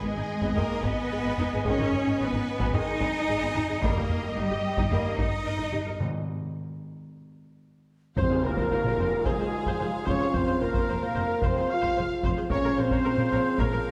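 This epic orchestral film-score excerpt moves at 110 BPM in 4/4 with a dramatic, epic mood, starting in G# minor before shifting to F minor at 8.2 seconds. A dark, softly attacked violin section carries the melody in the background while a rich, focused second violin line, a smooth viola section and a lush cello section fill out the strings over a clear, intense double bass section. Timpani struck with medium mallets sound up front at the opening, and a close, dry taiko ensemble drives the rhythm from 0.4 seconds, joined by a mellow French horn section and a distant, roomy trombone section holding sustained chords. After a break at 6.0 seconds, the full ensemble hits an accent at 8.2 seconds, where a dark trumpet section adds stabs, an airy, hollow flute section takes up a second line, and a very quiet tam-tam and a huge sub drop mark the impact. The production is dark and warm, set in a wet recital hall reverb that surrounds the orchestra.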